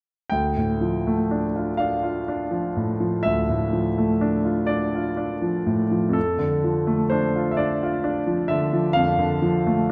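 Mournful and wistful, this short excerpt from a romantic classical nocturne for solo piano unfolds in D minor at a slow 42 BPM in 12/8, its rubato pulse felt in dotted quarters. A clear, natural concert grand sits up front, its deep bass anchoring a range from D2 to G5 as the harmony rests on Dm before shifting to Dm/F at 6.2 seconds. The piano plays alone from 0.3 to 9.9 seconds, bathed in the wet reverb of a recital hall.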